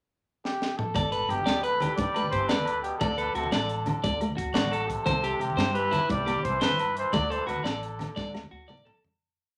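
Carefree and joyful, this short highlife guitar band piece moves at 116 BPM in a straight 12/8 in G major, opening with a drum fill under a warm, jazz-style trumpet melody that starts at 0.5 s with light vibrato and scooped notes, and from 1.3 s a nasal, straight-muted trombone harmony line mostly in sixths sits in the background. A tight funk kit with a high-tuned snare drives the groove alongside hard-handed congas and ringing, vintage agogo bells, while a bright, twangy electric guitar at the edge of break-up plays picked arpeggios up front over a fingerpicked flamenco guitar ostinato and a woody pizzicato upright bass with a dotted figure. Moderate large-studio reverb surrounds the band as the chords move from G to D, C and D, and a closing drum fill arrives as the music fades out by 9.2 s.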